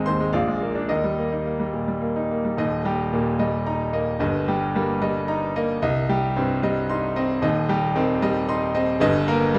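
Sparkling and brilliant, this short passage from a longer classical piano study carries a virtuoso's flair in triple metre, shaped with a free, rubato feel. A bright grand piano plays alone throughout the 9.6 seconds, ranging from a deep Eb1 up to a high C6. Its tone is natural and up front, with a crisp brilliance that gives each phrase a glittering edge. The harmony moves from a dominant Bb7 into the home chord, then shifts after 2.6 seconds into a new section that turns toward C minor before settling back onto Eb/G. A moderate recital hall reverb lends the instrument an open, resonant space around its sound.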